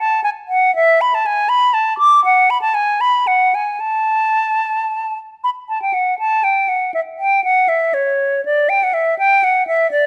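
Serene and flowing, this baroque-style classical fantasia for unaccompanied silver concert flute moves in a rubato 6/8 at about 72-84 BPM, with its opening idea returning at 5.4 s in this short excerpt from a longer piece. The flute sits up front between C#5 and D6, its pure, metallic tone shaped by vibrato and soft attacks. Close, detailed microphones capture the playing within a moderate recital hall reverb.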